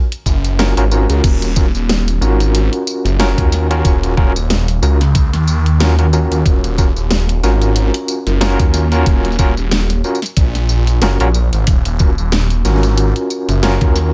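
A dubstep drum kit with a huge snare, crash, hi-hat and tambourine opens this gritty, playful glitch hop cut in Eb minor at 92 BPM with a swung 16th feel, joined at 0.3 seconds by a knocking electronic kick and a thick, swirling, phased detuned saw bass sitting up front with tube saturation, while from 0.6 seconds a barky, overdriven tine electric piano plays stabs through a combo amp with medium tremolo, sidechain pumping and dub echo over a single Ebm7 chord in a dry mix.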